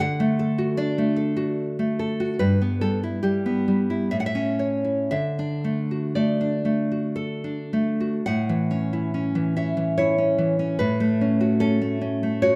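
A fingerpicked nylon-string guitar sits up front in this tender, nostalgic romantic excerpt for solo classical guitar, unfolding in a rubato 3/4 through a warm first phrase before a second section begins at 8.3 s, all framed by the moderate reverb of a recital hall.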